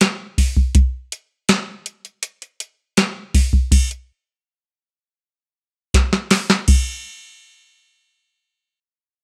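Brooding and smoky, this straight 4/4 blues fragment at 81 BPM rests on a soft vintage analog rhythm box placed up front in light reverb, its deep kick, crisp snare, metallic hi-hat and crash cymbal halting at 3.7 seconds before a drum fill at 5.9 seconds and a final stop at 6.9 seconds.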